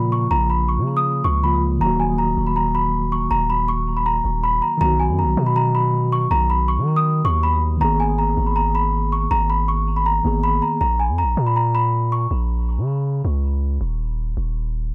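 A dry, gritty studio sound frames this hard-hitting, dark trap cut, taken from a longer piece and moving with a heavy half-time feel. A small celesta carries the melody high up front, its bell-like, delicate tone sweet and airy and trailed by tape echo. Beneath it, a clean tine electric piano heard through its built-in speakers lays down a mellow accompaniment until it drops out at 10.8 seconds. A deep 808-style bass runs the whole way, its sine tone striking fast and then decaying in long sustained notes that sit forward in the mix. When the celesta stops at 12.3 seconds, the bass holds the break alone through to 14.9 seconds.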